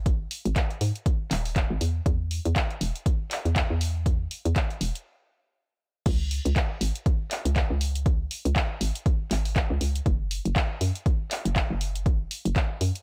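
A hollow, knocking FM bass opens this smooth, deep house excerpt at 120 BPM, its bouncy, fast-attack, decaying notes sitting up front and pumping against a punchy electronic kick, while a swung groove of handclaps, dark hi-hats and crash cymbal rides beneath them. The layered drums carry the feel of a small room, yet the overall sound stays dry and close. After a brief stop from 5.1 to 6.1 seconds, the track drops back in and runs through to the end of the cut.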